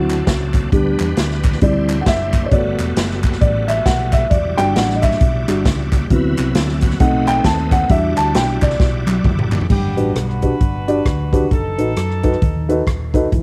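A dark, boxy concert grand piano carries this soulful, hopeful uptempo gospel clip at 134 BPM in G major, taking a solo over a swung 4/4 groove. The piano is backed by a bright, shouting tonewheel organ on slow rotary speaker, a round, hollow-body electric bass, a polished, airy big-band drum kit with a punchy kick, and distant, crisp group handclaps. After a drum fill, the organ and claps drop out around 9.7 seconds, and a loose, roomy horn section takes the melody, all heard through a homespun cassette tape sound with light reverb.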